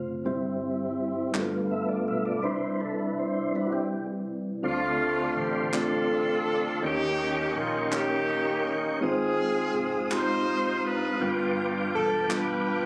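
Uplifting and reverent, this slow gospel excerpt moves in a 6/8 lilt at 55 beats per minute, with its progression travelling from C over G and G7 through Dm7, Eb7 and Ab6 before settling back on G7. A mellow, clean tine electric piano sits up front through its built-in speakers, carrying the accompaniment, while a dark, round, foam-muted electric bass gives a punchy, amped foundation from the background. The tonewheel organ holds smooth sustained chords with key click, chorus vibrato and a slow rotary speaker, and takes a featured solo over the opening 4.6 seconds. At 4.7 seconds a warm horn section enters with the melody, its pop-style ensemble sound marked by vibrato and a smooth top. Crisp, human group handclaps in a live room appear briefly near the start and return from 5.7 seconds. The sound has the intimate, compressed feel of a phone recording made in the room, wrapped in club reverb and a moderate stage-like ambience.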